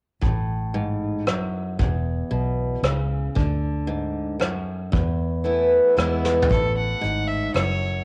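Honky-tonk and classic country in a sunny, down-home waltz time, this short cut from a longer piece moves with an easy, straight feel. A picked steel-string acoustic guitar sits up front, warm with a bit of finger squeak and an auditorium-sized body, while a dark, round, foam-muted electric bass plays a vintage fingered line underneath. A soft brush kit, distant and roomy yet placed up front, adds hi-hat, a tight kick, rim clicks, a medium-tuned snare and toms, and a drum fill at 6.2 seconds leads into a new section. There, at 6.5 seconds, a clear, earthy bowed fiddle enters with the melody, with light vibrato and a smooth top. The guitar, drums and fiddle carry a cassette-tape tint, the whole home recording sits in moderate spring reverb and a small room, and the chords move from F#madd9/A through E5, D, Esus4 and E before landing on A.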